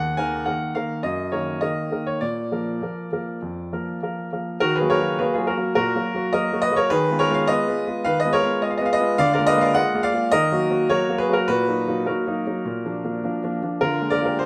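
Opening on a single Eb5 from a solo baby grand piano, warm and natural in tone and placed up front, this elegant, restless classical-period sonatina fragment in Eb minor moves at 104 BPM in a straight 4/4, its long sustain caught by close, detailed microphones and light reverb as the harmony passes through Ebm/Gb and Bb before a new passage at 4.6 s circles through Fm7b5/Eb and Bb7/D, with the excerpt cutting off on Bb7/D.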